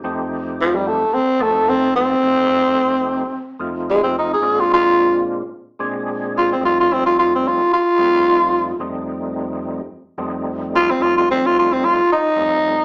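A growling tenor saxophone takes the solo up front, entering at 0.6 seconds with a breathy, raspy subtone, soft attacks, scooped notes and a mellow vibrato in a jazz style. This is a laid-back, soulful blues at 109 BPM in 4/4, with a light sixteenth-note swing and an F mixolydian flavour. Underneath, an overdriven tonewheel organ plays the accompaniment throughout, its full, gritty tone marked by percussive second-harmonic percussion, chorus vibrato, a slow rotary speaker and a slapback echo, sitting well beneath the horn in the mix. The harmony moves from F9 to Bb9 and back to F9. The sound is that of a live gig heard through the venue's PA, with moderate club reverb and a small-speaker quality, in a short slice cut from a longer performance.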